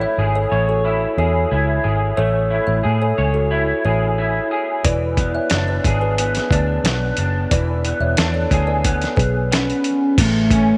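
A straight 4/4 pulse at 90 BPM carries this short, laid-back, dreamy slice of indie and bedroom pop in A major, drifting from Amaj7 to E7 and back. From the start, a bright, twangy electric guitar through a small old amp plays a slightly broken-up, lo-fi accompaniment with ensemble chorus and a warbly pitch drift. Beneath it, a dark, round, foam-muted picked electric bass sits up front, while a woody, ringing kalimba adds a second line touched by subtle chorus and tape echo. A dusty soul sampler-style drum kit enters at 4.8 s, gritty and overdriven, with a thumpy kick, fat snare, hi-hat and crash. Near the close, a hollow, soft clarinet-like synth lead carries the melody from 9.5 s, with phaser, chorus and vibrato. A very quiet, smooth analog pad slips in at 10.2 s, and a moderate echo-chamber reverb gives the whole mix a dreamy sense of space.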